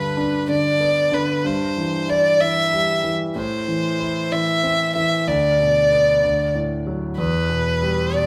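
A six-eight pop ballad in G major at 63 BPM, romantic and tender, cut from a longer piece, with a rich, smooth, even violin singing the melody with vibrato, close and up front, over a clear concert grand piano whose deep bass, long sustain and audible action noise give the accompaniment an intimate, polished presence. Both play together for the full 8.3 seconds, moving through G, C/G, Am, Bm/D and D before settling on Em at 7.2 seconds. The pair sounds like a live performance in one room, bathed in a wet stone-room reverb.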